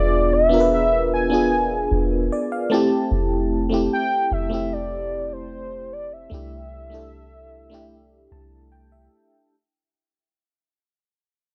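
A velvety synth lead, up front with chorus and tape echo, carries a moody, longing melody over glassy, bell-like FM electric piano with tremolo fills at 1.9 and 7.9 seconds and a soft, round 808-style bass in this dry, gritty, cassette-toned contemporary R&B fragment at 75 BPM, moving from E7b9 to Fmaj9 to C69 as it fades out.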